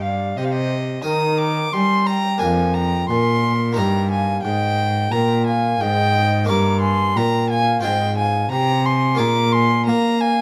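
Grave and solemn, this excerpt from a baroque-style sonata movement with continuo moves at a measured 89 BPM in 4/4, shifting from C minor through E-flat and G minor before settling on a bare B-flat. A hollow, woody baroque flute carries the melody with a pure, soft-edged straight tone, while a gut-string violin with light vibrato sings a second line above it and sits more forward in the balance. Underneath, a rich, reedy cello anchors the bass up front and an airy, bright harpsichord fills in the accompaniment, all captured with close, detailed microphones and a light touch of reverb.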